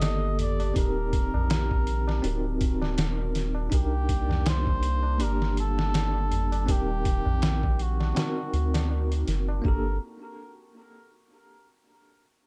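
This smoky, brooding trip hop excerpt opens with a cup-muted trumpet, a bell-like tine electric piano, soft dub sub bass, a sampler-style drum kit and tabla sounding together at 81 BPM, with a lightly swung 16th-note feel in G harmonic minor. The trumpet carries the melody in a mellow, veiled, classical-style voice coloured by tape echo. The electric piano's bright, clean accompaniment carries tremolo, 12-bit sampler grit and its own tape echo. A warbling, nostalgic pad of detuned, chorused chords enters at 0.1 seconds and sits in the background, lo-fi and warm. Up front, the round, deep sub bass with tube saturation sits beside the compressed, pitched-down kit, whose thumpy kick and medium-tuned snare carry studio reverb, while high-tuned, ringing tabla stays further back. The harmony moves through Gmadd9, Eb6, D7b9b13 and Cm9, returning to Gmadd9 as a new section begins at 9.6 seconds, all within a dark, dry, warm production.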